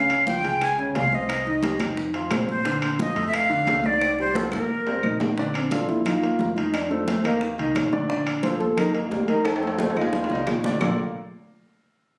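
Captured on a phone in a reverberant large studio and compressed, this lively, sophisticated Afro-Cuban jazz fragment in Bb major at 176 BPM opens with a breathy, bright flute carrying the melody up front until 5.2 seconds, before a dark trombone with light vibrato takes a smooth jazz solo from 5.6 seconds, all over an intimate grand piano with audible action noise, a woody pizzicato upright bass, thick-skinned high-tuned congas, round low-tuned bongos, ringing metal-shell timbales and saturated claves, with drum fills closing each half.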